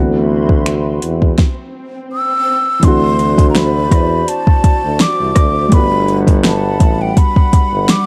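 Contemporary R&B at 83 BPM with a gentle swing, smooth and romantic, set in a dark, small-room sound and cut from a longer piece. A clear tuba with light vibrato carries the bass beneath a felt-muted upright piano, boxy, with thin felt and audible action noise, and an airy, flute-like pad with chorus, while an up-front, overdriven electronic drum kit brings a fat snare, metallic hats, rim clicks and finger snaps. An electronic swell fills a brief stop from 1.4 to 2.8 seconds, and a breathy, close-miked concert flute takes the melody from 2.1 seconds as the chords move from D13 to D7 to Gmaj7.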